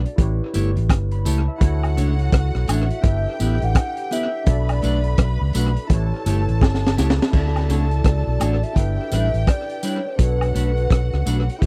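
A smooth, sweet lovers rock reggae excerpt with a lilting swung feel, where a punchy, up-front breakbeat kit with dark cymbals and tape echo and a round, foam-muted bass anchor clean electric guitar stabs, a barky overdriven tine electric piano with lush chorus, and tambourine and woodblock, while a rich bowed string section enters at 1.6 seconds and a hollow, woody clarinet-like synth lead carries the melody from 2.7 seconds, all in a dry, close 1970s-style studio sound with a drum fill at 6.6 seconds.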